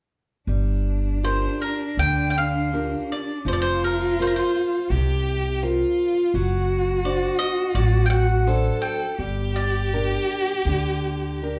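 A large studio's wet reverb wraps this band playing live together in one room, giving a short passage from a longer fado-style ballad a mournful, longing air. At 83 BPM in 4/4 and G minor, the rubato phrasing drifts over a progression from Gm7 through Fsus4 and D7/F# before settling on Gm. The bowed cello, upright bass and fingerpicked nylon-string guitar begin together at 0.5 s. The cello carries a dark, expressive second line with vibrato, portamento and a smooth top, while the pizzicato gut-string bass sits up front with a woody, thumpy sound beneath the small, warm guitar accompaniment. At 1.2 s the picked mandolin enters with the melody, its round, double-stringed tone placed up front, and all four parts play on to the end at 11.6 s.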